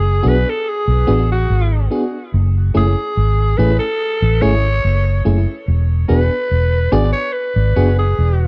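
The rhythm sits in a steady, straight four-to-the-bar lovers rock reggae feel, unhurried and easy, in this short cut from a longer piece. A vintage muted fingered electric bass anchors the low end from the first moment, dark, round and punchy, placed up front and the most prominent part in the mix. Above it, a growling alto saxophone carries the melody as a pop-style solo, its raspy, gritty tone edged with vibrato and trailed by tape echo, giving the line a longing, bittersweet voice. An FM electric piano with tremolo enters at 0.2 seconds and plays until 7.9 seconds, offering mellow, decaying accompaniment with a fast attack, a noise layer and a slapback echo. The harmony moves from G#m7b5 to F#m7 and then E7. The whole passage has the dry, close sound of a small 1970s-style studio room.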